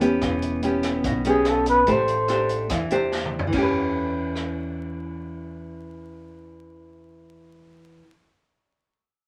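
Vinyl crackle and a moderate small-room reverb give this short bossa nova fragment a worn, intimate sound. In E minor at 145 BPM with a straight 4/4 feel, the mood is melancholic and smooth. Up front, a fingerpicked nylon-string guitar plays in a classical style with audible finger squeak, moving from Em6 to Am7 and back to Em6. Beneath it, a woody, thumpy pizzicato upright bass on gut strings holds the low end, while a distant, roomy big-band drum kit with a boomy kick and a medium-tuned snare adds hi-hat, rim click, toms and crash. A mellow, breathy flugelhorn enters at 1.3 s for a brief jazz-style solo phrase with light vibrato, sitting prominently at the front of the sound. A drum fill arrives at 3.1 s, and the kit drops out at 4.4 s, leaving guitar and bass to carry the second section.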